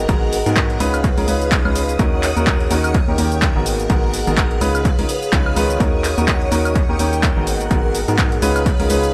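Soulful, bittersweet piano house in Eb minor at 126 BPM with a swung 16th feel, this excerpt from a longer piece sets a bright, gritty grand piano riff with dub echo up front over a hollow, organ-like FM bass, a shimmering string machine and a warbling lo-fi tape pad in the background, all pumping to the sidechain, while a punchy electronic kick and a tape-warm analog drum machine of handclaps, hi-hat, shaker and woodblock drive an echo-heavy mix through a looping Abm9–Db9–Ebm7–Eb7 progression.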